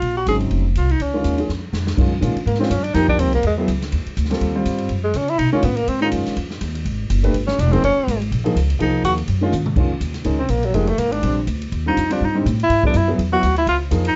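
Swinging at 246 BPM in 4/4, this cool, smoky small-group jazz excerpt in Bb minor rides on a woody, thumpy pizzicato upright bass and an airy, polished big-band drum kit with a punchy kick, which plays fills at 1.5 and 9.5 seconds. An up-front tenor saxophone carries the melody with light vibrato and a smooth, soft-attacked tone, moving into a solo at 9.8 seconds, while a vintage grand piano accompanies through shifting chords such as Bbm7, Ebmaj9 and E7alt. The dark, warm production sits in a moderate studio reverb.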